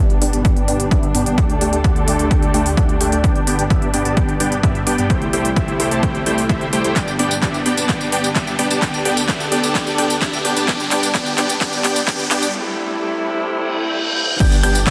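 This festival progressive house cut opens on a thick, detuned supersaw riff sitting up front, pumping against the beat through a low-pass filter and tape echo, over veiled, con sordino strings holding sustained chords and a chorused saw bass, both in the background. The big-room kit arrives almost at once with crisp hats, handclaps, tambourine and crash, and an overdriven, punchy kick lands just after, giving the triumphant, euphoric mood its drive. A filter sweep on the supersaw runs through the whole build-up, while a riser and reverse cymbal rise beneath from 4.8 seconds. A drum fill gathers from 7.0 seconds before a break at 12.5 seconds, where a reverse cymbal swells from 13.6 seconds. At 14.4 seconds a clear baby grand enters with high arpeggios, its action noise audible, just as the excerpt cuts off in a dense, heavily limited mix with light digital reverb.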